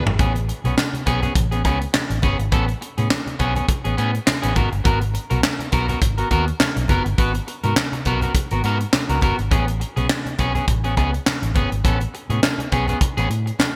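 A tight, up-front funk drum kit with a high-tuned snare, tight kick and handclaps under gated reverb opens with a fill at 0.0 s and drives this slick, late-night early-eighties boogie funk excerpt at 103 BPM with a swung 16th feel, as a twangy, slightly broken-up electric guitar riff with subtle chorus, a dark, round, foam-muted fingered bass and very quiet, low-tuned congas move from Amaj9 to G#m9 and back in bright 1980s-style digital production with small-room ambience.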